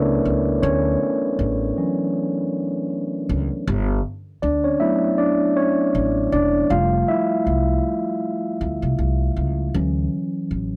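A moderate echo-chamber reverb with a 1.8-second tail wraps this dreamy, cosy lo-fi hip hop excerpt, taken from a longer piece, at 79 BPM in 4/4 with a 16th-note swing and tuning slightly below standard at A4 = 438 Hz. A mellow, clean tine electric piano, heard up front through its built-in speakers, takes a solo across the full 10.8 seconds while moving through Dmaj9, a rootless Gmaj9 and Fmaj9 before returning to Dmaj9 at 9.7 seconds. Beneath it, a pizzicato upright bass with gut strings sits up front, woody, dark and thumpy.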